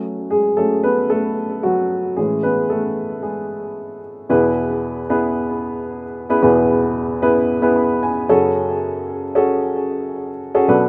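Pop piano piece, uplifting and hopeful, played on a solo upright piano with a dark, mellow, woody tone that sits up front and carries a touch of digital delay. The instrument moves from F#madd9 to Amaj7 before settling on E, with a brief fill at 7.5 seconds before the opening chord returns at 8.3 seconds. Light reverb and small-room ambience give this short fragment of a longer piece a rough, natural home-demo feel.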